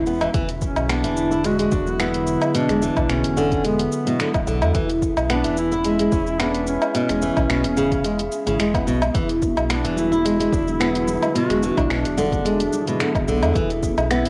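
A hazy, cassette-worn home recording with moderate spring reverb carries this earthy, peaceful organic downtempo piece in E mixolydian at 109 BPM, with a light swing on the 16ths and chords moving between E9 and C#m/E. An up-front fingerpicked flamenco guitar plays arpeggios alongside a mellow, softly attacked duduk melody with folk-style vibrato, both touched by tape echo, while a bell-like tine electric piano and a warbling, nostalgic, detuned pad sit in the background, pumping with the beat over a round, dark analog bass. A punchy, overdriven electronic kick and a deep house kit of finger snaps, hi-hat, shaker and woodblock drive the groove, and faint, distant congas and bongos join at 9.4 seconds in this short cut from a longer piece.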